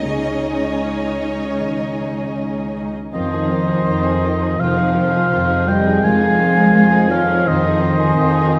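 An up-front oboe with light vibrato enters at 3.1 s, along with an airy, distant flute, a tight French horn section holding sustained chords and a focused double bass section, over a rich violin melody, a second violin line with portamento, dark, lush violas, ringing fingerpicked harp arpeggios and a smooth cello bass, in this sorrowful, rubato cinematic orchestral excerpt set in wet scoring-stage reverb.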